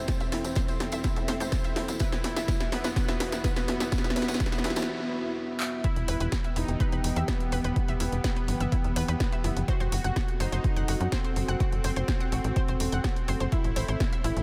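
Soaked in a huge, dreamy reverb, this hypnotic and dramatic melodic techno excerpt in E minor at 125 BPM rides a layered, up-front electronic kick drum and a tight, nasal sequencer bass under a moody, wave-folded analog pad, a smooth detuned supersaw melody with delay that is filter-swept through the build-up, bright pluck arpeggios with tape echo, and an overdriven analog drum machine of handclaps, hi-hat and snare, while a warbling analog drone and a jingly tambourine end at 4.9 seconds before a short break and the drop at 5.8 seconds, with sidechain pumping on the supersaw, pad, bass, drone, pluck and hi-hats.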